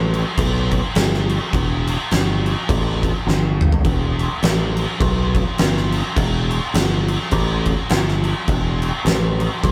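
Ominous and heavy, this stoner and doom metal passage in E minor moves at 104 BPM in 4/4 with a swung eighth-note feel. A growly, overdriven picked electric bass sits low in its register from the start, joined at 0.1 seconds by an oversized, low-tuned acoustic drum kit with a boomy kick, fat snare, gritty crash and toms, placed up front in a pumping big-room sound. A drum fill arrives at 3.3 seconds in this live, one-room band performance, lightly touched with reverb.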